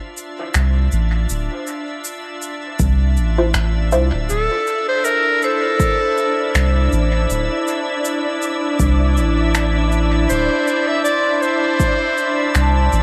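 A pure, organ-like pad fades in on a sustained Dm9 chord with ensemble chorus and its own reverb, soon joined by tape-warm electronic shaker and finger snaps trailing dub echo and a round, soft sub bass, all set in light reverb under vinyl crackle in this meditative, spacious ambient dub piece. A deep, layered electronic kick arrives up front at 2.8 seconds, a muted, detuned chord stab with a filter sweep flickers briefly, and a clear, close-miked clarinet takes the solo melody at 4.3 seconds with dub echo. From 5.4 seconds, a metallic, ringing vibraphone struck with hard mallets adds echoed arpeggios, while an airy, breathy wind-like noise texture settles into the background.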